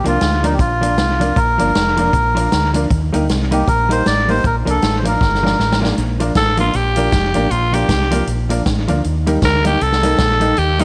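Upbeat and bouncy, this swinging ska excerpt at 156 BPM in Bb major opens with a reedy, nasal melodica carrying the tune over a round, up-front fingered electric bass, a dark, clean hollow-body jazz guitar and woody upright piano stabs tucked in the background, and a big-band drum kit with a punchy kick and slapback echo, until a drum fill arrives at 5.2 seconds, the melodica drops out at 5.8 seconds, and a raspy, gritty alto saxophone solo with light vibrato takes over from 6.4 seconds, all set in a small room with light reverb.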